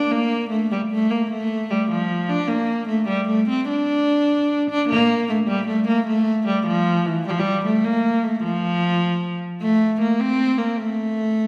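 In a 6/8 at 101 beats per minute, counted in dotted quarters with a straight feel, this short medieval excerpt moves with a mysterious yet driving pulse. A single bowed, fretted viola da gamba carries the whole passage alone from 0.0 to 11.5 seconds, ranging from E3 up to D4. Its tone is woody and ringing, with a soft attack and light vibrato, and it sits up front in the sound. The instrument is wrapped in a wet, lingering reverb of about 1.9 seconds that suggests a church or concert hall. The phrase is heard twice, with the repeat beginning at 4.9 seconds, giving the fragment a circling, incantatory quality.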